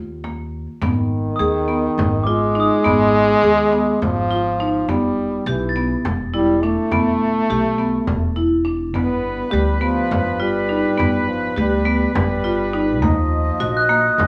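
Urgent and hypnotic, this contemporary chamber piece runs in 7/8 at 207 BPM in eighths, opening on pizzicato upright bass with a woody tone while a rosewood marimba spins arpeggios and a deep, close, dry frame drum played with soft hands enters at 0.2 seconds. A warm French horn with light vibrato and a soft attack carries an up-front second line over chords moving from Abm through Em and G to Ebmadd9, and a bell-like glockenspiel with soft plastic mallets rings from 1.4 seconds and returns later. A tight woodwind section with light vibrato adds sustained chords from 8.9 seconds, all within moderate studio reverb in this passage cut from a longer work.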